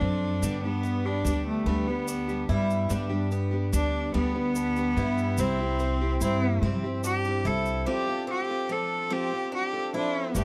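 Acoustic folk for a duo or small band in G mixolydian, this nostalgic, gentle passage moves at a slow 48 BPM in 6/8 over G, C and F chords. A biting, nasal bowed cello with light vibrato carries an up-front solo melody, with a break at 7.9 s, while an upright bass plucks woody pizzicato lines and a picked steel-string guitar accompanies with audible finger squeak. From 0.4 s a boxy, octave-doubled twelve-string adds shimmering arpeggios and a grainy tube shaker ticks along, all captured in a dry, close 1970s-style studio sound.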